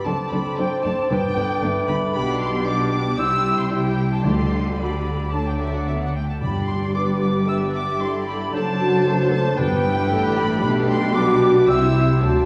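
This quick, spirited classical-period movement for symphony orchestra opens at once with muted violins carrying a veiled, con sordino melody high above, joined by a clear oboe, a mellow clarinet, a mellow bassoon and a dark French horn section holding soft-edged sustained chords, the loudest part of the texture. A moment later a bright, airy silver flute adds a second line in the violins' register, while a second muted violin section weaves a further line and violas, cellos and double basses fill in the accompaniment and bass with vibrato-laden, bowed tone, the basses lush beneath. Round, soft-mallet timpani enter at 1.1 seconds and drop out at 10.3 seconds. In a straight 4/4 at 114 BPM in G major, the graceful harmony circles from D7/F# through G, G/B, C, G/D, D and G before starting the cycle again. The orchestra sounds set back in a reverberant scoring-stage space with a faint vinyl crackle, and the passage is cut from a longer piece.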